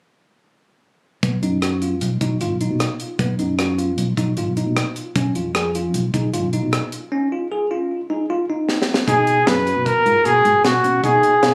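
Set in a straight 5/4 at 153 BPM, this bright, intricate progressive instrumental in B lydian opens at 1.2 seconds with a dry reggae drum kit, with its high-tuned snare and tight kick, alongside a growly, amped fingered electric bass and clean, bell-like tine electric piano arpeggios carrying tape echo over chords moving from B to a rootless G#m6. A drum fill at 8.7 seconds leads into a B6 chord at 9.1 seconds, where a breathy, jazz-style trumpet with light vibrato and plate reverb takes the solo melody up front. The short cut from a longer piece sounds captured on a phone in a club-like room, with moderate reverb and compression.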